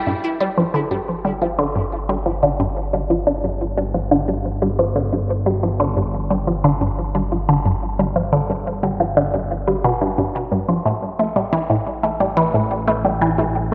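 A straight 4/4 pulse at 89 BPM drives this hypnotic, mysterious stretch of ambient, sequencer-driven space music, cut from a longer piece. A fat, saturated analog bass holds the low end between G1 and A1 from the very start, its detuned sawtooth tone thick and evolving as it sits beneath the mix. From 0.1 seconds a resonant blip pluck carries the riff between G2 and A3: bright, squelchy and up front, with a detuned sawtooth core, a noise layer and ring modulation giving it a juicy bite. A filter sweep runs over this synth arpeggio for the whole passage, and phaser and tape echo send its short, fast-attack blips trailing through the space. The harmony stays unanchored until an A5 chord settles in at 10.9 seconds. A wet spring reverb and an echo-heavy mix wrap the sound in a deep, cavernous haze.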